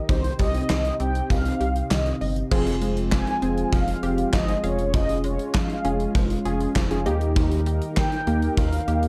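A mellow, brassy synth lead carries the melody over a smooth, sustained pad with chorus from the very start of this melancholic yet driving synth-pop excerpt, the lead trailed by analog delay. Almost at once a gated 80s drum kit with a punchy kick and bright cymbals sits up front, joined by a rubbery, hollow square-wave bass, round detuned keys and a background pluck playing delayed arpeggios. The chords move from Cm through Fmadd9 and Db/F to Eb, with a new section arriving at 2.5 seconds, in a small, lightly reverberant room and a dark production.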